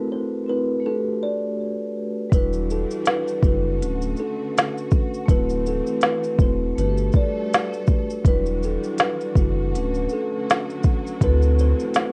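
A woody, hollow kalimba with a vintage, band-limited tone carries the melody from the start, plucked with the fingertips over a mellow vibraphone played with soft mallets and shimmering with a slow motor vibrato, as the harmony moves from Am69 to Gmaj9. This reflective, hazy lo-fi hip hop fragment sits in B minor at 81 BPM in 4/4, with a 57% swing on the sixteenths and tuning set to A4 = 435 Hz. At 2.3 seconds, a lush, bowed studio string section enters with sustained chords, alongside a deep, round dub sub bass and an electronic drum kit with a soft kick, woody snare, smooth hi-hats and shaker. The drums sit up front, roughened by overdrive and 12-bit sampler grit, and sound re-recorded in a small room, while the bass is soft but pushed forward. The chords cycle through Em9, Bm7/D, D13 and Gmaj9 before settling on D9 near the close. Light reverb and a cassette-tape character give the recording its haze.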